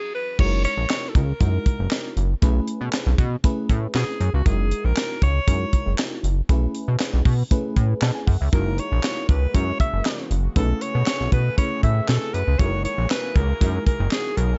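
A reverberant studio sound with a softened top end frames this feel-good, danceable early-eighties boogie funk clip at 118 BPM, opening with a brief band accent before the groove settles in at 0.4 seconds on alternating F#13 and B13sus4 chords. A breathy, intimate alto saxophone carries the jazz-style melody with light vibrato and subtone over a glossy, chorused synth bass and a tight, dry drum kit with a high-tuned snare, handclaps and gated reverb, both up front. A warbling FM electric piano with a phaser adds dark accompaniment, while a lush, detuned unison pad sits in the background, sustaining chords at the start and returning at 8.5 seconds.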